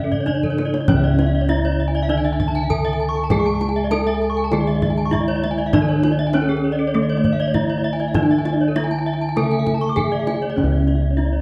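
The lead bronze metallophone carries the melody in this brilliant, shimmering excerpt of Balinese gamelan, its horn-mallet tone close-miked, dry and full, with paired tuning that sets its ringing notes beating against each other. The piece moves at 99 BPM in a straight 4/4 in C# pelog. A kendang, deep and played with soft hands in a live room, enters with a short fill from 0.1 to 0.9 seconds that leads into the main section. Beneath the melody, a lower metallophone struck with a wooden mallet plays a mid-forward accompaniment, while round, beating bossed gongs anchor the bass. Two higher metallophones weave arpeggios above: one airy and shimmering, the other with a vintage, band-limited colour. A moderate scoring-stage reverb of about 1.8 seconds wraps the ensemble in a dark production.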